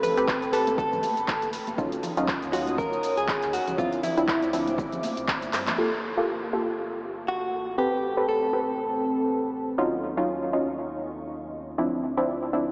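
A dreamy, reverb-soaked mix with a small-speaker sound opens this late-night deep house fragment, cut from a longer piece and set at 120 BPM in 4/4 with a swung sixteenth feel. Up front, a muted, detuned sawtooth dub chord stab with chorus and analog delay pumps with the sidechain, while a dark, moody analog pad with slow attack and long release sustains beneath it, also pumping. A clean, scooped electric guitar, recorded direct and compressed, picks a melody through analog delay until 9.5 seconds, and a deep sine-and-triangle sub bass with an octave sits in the background. A dry, punchy electronic kick and an analog drum machine with handclaps, hi-hat and shaker drive the groove alongside overdriven, layered congas, until a drum fill at 5.5 seconds and a band accent at 5.7 seconds hand off to the next section at 5.8 seconds. From there the drums and congas drop away and a filter sweep runs across the pad as the chords move from Gm9 through Am9 and Ebm9 to Dm9.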